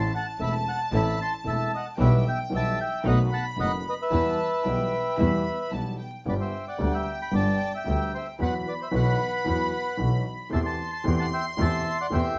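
Dramatic and tense, this tango fragment, cut from a longer piece, moves at 113 BPM in 4/4 with a rubato feel, set in E harmonic minor before turning to G major at 6.3 s. A dark, reedy bandoneon carries the melody up front alongside a close violin section with a gut-string, period-style tone and light vibrato, while a warm concert grand supplies a deep-bass accompaniment and a focused, bowed double bass anchors the low end. A distant, lush string section adds very quiet bowed stabs until 6.0 s, and the recording sits in moderate studio reverb under a layer of vinyl crackle.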